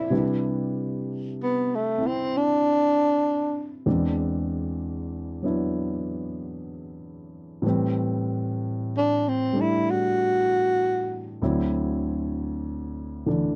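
A slow swing at 64 BPM in 4/4 sets an intimate, late-night jazz ballad, cut from a longer piece, with a growling tenor saxophone carrying the melody up front through a Cmaj7, E7b13, Am7 and D7 progression. The saxophone's dark, breathy subtone is raspy and gritty, with soft attacks, scooped notes and vibrato, before it stops at 11.3 seconds. The grand piano accompanies until 13.6 seconds with a natural, warm sound and audible action noise, in a dry, close 1970s-style studio recording with light reverb.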